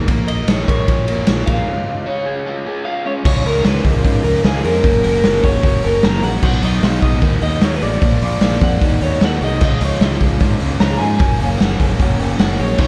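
Indie rock with a wistful yet upbeat mood, this excerpt from a longer piece pairs a crunchy, double-tracked overdriven guitar riff bathed in spring reverb with a growling fingered electric bass that sounds bright and overdriven. A raw garage drum kit sits up front in a stone room, gritty and saturated with a punchy kick and a rolled-off top. From 0.3 seconds, a twangy, lo-fi electric guitar through a small old amp carries the melody, slightly broken-up and washed in spring and plate reverb, with a break from 1.7 to 3.3 seconds before the main passage unfolds in a dark, warm production with light reverb.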